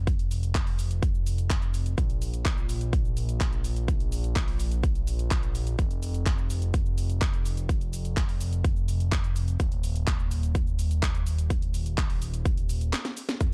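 Opening on a fat, detuned analog bass with sidechain pumping, low between Eb1 and Bb1, this emotional, euphoric festival progressive house excerpt at 126 BPM in straight 4/4 soon adds a punchy, up-front electronic kick and a tape-warm house kit of handclaps, hi-hat, shaker and cracking snare re-recorded in a large room, all in a dark production with little reverb, before a brief break and drum fill at 12.9 seconds.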